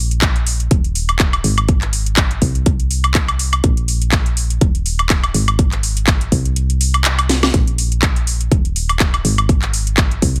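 Euphoric and uplifting, this short piano house excerpt rides a steady groove with a light swing on the sixteenths. A punchy electronic kick sits up front, layered with a house drum kit of handclaps, a cracking snare, metallic hi-hats and woodblock, both carrying a tape-warm character from being re-recorded in a small room. Underneath, a round, mellow FM bass with a fast attack and decaying notes moves in the low register and pumps through sidechain compression. The kick drops out between 6.6 and 7.5 seconds, and a drum fill arrives at 7.3 seconds before the beat returns. The mix is dry and close, with little reverb, keeping every part present and immediate.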